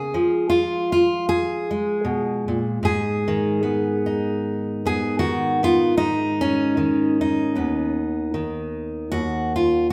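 Wistful and melancholic, this short folk fragment cut from a longer piece features a solo fingerpicked steel-string acoustic guitar, woody and full-bodied with the warm tone of old strings, sitting up front and ringing in a stone room's reverb as it moves at a lightly swung 77 BPM in G# dorian through C#, G#m and D#m harmonies over its 9.9 seconds.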